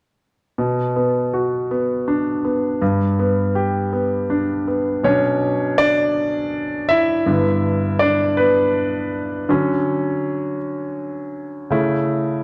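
Set in a dark, warm production bathed in lush recital-hall reverb, this dramatic, melancholic pop fragment in 6/8 features a clear, polished, up-front concert grand piano with a deep bass and short sustain playing alone from 0.6 to 12.4 seconds, moving from B minor and G through Bmadd9, Dmaj7 and A/C#.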